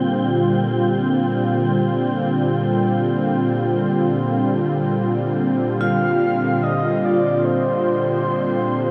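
A warm, detuned analog pad sits up front with soft-attack sawtooth chords and a gentle chorus, while a breathy, wind-like tuned noise texture hovers in the background and fades out across the excerpt. This serene, spacious ambient piece in free time rests on a Bb69 chord, bathed in a huge, dark reverb with a 9.5-second tail. At 5.8 seconds a soft, flute-like synth lead with vibrato and tape echo enters alongside ringing vibraphone arpeggios played with medium hard mallets and slow motor vibrato.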